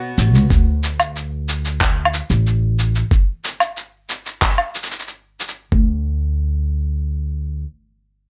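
A rich string quartet opens with a brief sustained Bsus2 chord, its nasal, reedy gut-string tone carrying light vibrato and a touch of plate reverb, before an up-front pizzicato upright bass with a woody, dark thump enters at 0.2 s alongside a muffled, sampler-style kit of electronic shaker, woodblock and handclaps. This delicate folktronica fragment moves at 92 BPM in D major, with a compressed electronic kick arriving at 0.5 s on a D5 chord, the close, dry percussion sounding re-recorded in a small room over a faint mains hum. The drums drop out by 5.9 s, leaving the bass to carry on until 7.6 s in this short cut from a longer piece.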